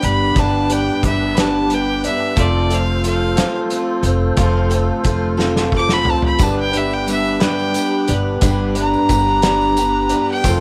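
A clear, up-front fiddle solos over shimmering, octave-doubled twelve-string acoustic guitar, a slightly broken-up electric guitar riff, thumpy pizzicato upright bass, a punchy loose indie drum kit with a fill at 5.4 seconds, and a fat tonewheel organ with slow rotary speaker in the background, with a jingly tambourine joining at 6.4 seconds, in this hopeful, jangly folk and heartland rock excerpt in G mixolydian at 60 BPM in 6/8, moving from G to F and back in a small room with light reverb.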